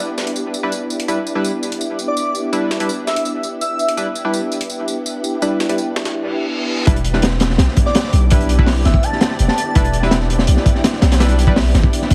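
A silky, vintage string machine opens this atmospheric, nostalgic drum and bass excerpt with sustained Em7 chords thickened by ensemble chorus, over a thin, filtered sampler-style breakbeat of hi-hat, snare and tambourine that sounds re-recorded in a large room. Nasal, band-passed chord stabs with chorus and dub echo soon join, and at 2.1 seconds an airy, dreamy lead floats in high above, its detuned unison tone carrying vibrato, portamento, a cassette-tape tint and echoing repeats. An electronic reverse cymbal at 6.3 seconds leads into the drop at 6.9 seconds, where a deep, sine-like 808-style bass and a crunchy, saturated jungle breakbeat take over, its punchy kick and high-tuned snare sitting up front with a rolled-off top. The lead returns over this heavier groove as the strings and stabs carry on. The whole mix has the squashed feel of heavily compressed radio, with vinyl crackle and a light studio ambience.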